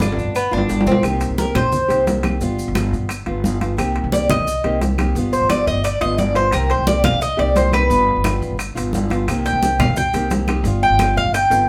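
A metallic, double-strung Cuban tres sits up front in this sultry, danceable excerpt of Cuban son and guajira, taking a picked solo from 1.0 s, dropping out at 2.0 s and returning at 4.1 s over a C minor vamp that moves between Cm7 and G7 at 175 BPM. A dark, thumpy pizzicato upright bass on gut strings is also up front, while a bright, fingerpicked nylon-string guitar plays accompaniment beneath. A drum fill opens the music, and hard-handed congas and woody claves sit in the background alongside grainy maracas and ringing metal-shell timbales, with the band playing live in one room under moderate studio reverb.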